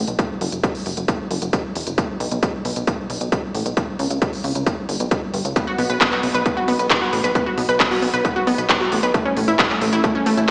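A lush, detuned unison pluck enters at 5.6 s with tape-echoed arpeggios that pump against the sidechain, lifting this bittersweet, emotional uplifting trance excerpt above a punchy, funky sawtooth bass that pumps in the same way, a heavy layered electronic kick and a tape-toned techno kit of handclaps and smooth hi-hats, while a hall reverb and stone-room reverb give the mix the sound of a big system in a bare room heard through a small speaker.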